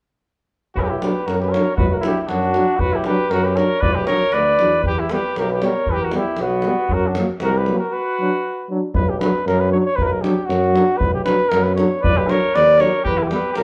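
Balkan brass band folk in B harmonic minor at 117 BPM, fiery and restless in a lightly swung 2/4, with a mellow flugelhorn carrying the melody up front over a vintage-toned trumpet second line that drops out from 8.7 to 12.0 seconds, a clear close-miked trombone and a background French horn on accompaniment, a distant, roomy tuba with vibrato on the bass, and a deep davul, all heard as a live band in one room with wet studio reverb, moving from Bm through Em and F# with a break at 7.9 seconds in this cut from a longer piece.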